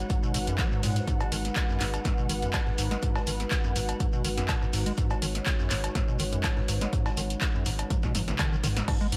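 Lightly reverberant and tape-tinged, this driving, raw acid house excerpt at 123 BPM in G# minor pumps a squelchy, resonant square-wave acid riff with overdrive and delay against a round, deep analog bass, a moody detuned sawtooth pad on a G#m7 chord, a bright, ethereal phased pad in the background, an up-front punchy electronic kick, an analog drum machine's cowbell, claps, toms and crash, a very quiet gritty sampler-style kit with tambourine, and a grainy shekere, before a drum fill from 7.9 to 8.9 seconds.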